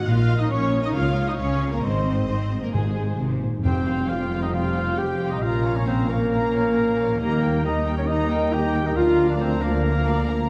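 Soaring and triumphant, this cinematic orchestral passage moves in a straight 4/4 and is cut from a longer piece, with chords shifting from B-flat minor through D-flat and A-flat toward F suspended, E-flat and B-flat over D. A lush, distant violin section carries the melody with smooth, even vibrato, while a second violin line sits in the background, joined by a very quiet, airy flute ensemble with rolled-off highs. Beneath them, a mellow French horn section holds sustained chords, a very quiet viola section adds expressive accompaniment with portamento, and a ringing concert harp plays arpeggios, all over a woody double bass section and a close cello section with a soft attack. Round timpani struck with soft mallets appear briefly from 2.7 to 4.3 seconds, and at 3.6 seconds a clear solo oboe enters on a second line alongside a very quiet trombone section on sustained chords and a vintage-toned trumpet playing stabs in the background. 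The production is dark and set in a wet scoring-stage reverb that gives the ensemble a grand, spacious sheen.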